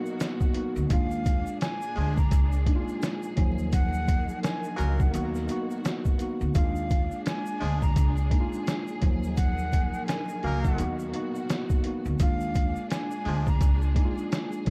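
A worn, slightly out-of-tune electric piano and a lush, distant bowed string section open this dark, gritty boom-bap hip-hop excerpt at 85 BPM, with a grainy shaker tucked in the background and a muffled, pitched-down sampler-style drum kit arriving up front with a thumpy kick, medium-tuned snare and hi-hat under a 58% swing on the sixteenths. A woody pizzicato upright bass enters at 0.8 seconds, sitting low in the Db2 to Eb2 range, and a breathy metal jazz flute with vibrato, a soft attack and an unsteady, lifted top takes the melody from 0.9 seconds, trailed by tape echo. From 2.0 seconds a jazz-style horn section adds octave-doubled stabs with light vibrato, also colored by tape echo. The harmony circles through Bmaj7, Bb7, Ebmadd9 and Bmaj7/D#, giving the loop a moody, unresolved pull. The production is dry and dusky with vinyl crackle, and the filtered piano, strings, flute and horns sit behind the compressed drums and bass.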